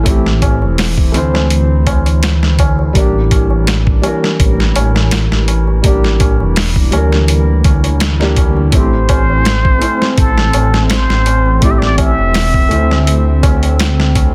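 Brooding and cinematic, this trip hop excerpt at 83 BPM in A phrygian rides a gritty, pitched-down boom bap sampler kit with a thumpy kick and a deep, rumbling detuned saw bass, both up front, beneath a felt-muted upright piano with audible action noise, tremolo and tape echo, a warbling, nostalgic tape-like pad and a low-tuned, ringing tabla in the background, while later a breathy, whispered plunger-muted trumpet with wah-wah and vibrato takes a jazz-style solo from 8.7 to 13.4 seconds within a dense, heavily limited mix.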